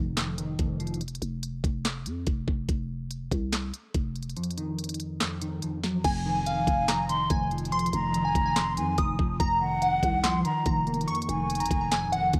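A dark, menacing trap cut taken from a longer piece opens on a clean, fingered electric guitar with a mellow, phaser-tinted and filtered cassette tone, over a growling, buzzy 808-style bass. The electronic drum kit arrives at 0.2 seconds, with a knocking kick, sharp snare, crisp hats, claps and crash sitting up front, and the guitar drops away briefly before returning at 4.4 seconds, when the kick falls out for the rest of the opening break. The track moves at 143 BPM in a heavy half-time feel, settled in F phrygian and opening on a hanging Ebsus2/F chord. At 6.0 seconds the second section begins on Fm7, and glassy digital keys take the melody with a chorused, filter-swept shimmer. Soon after, a breathy, bright baroque flute adds a second line, close-miked and a little unsteady, its wooden vibrato smeared by analog delay and tape. The whole recording has the hazy, lightly reverberant character of a home cassette production.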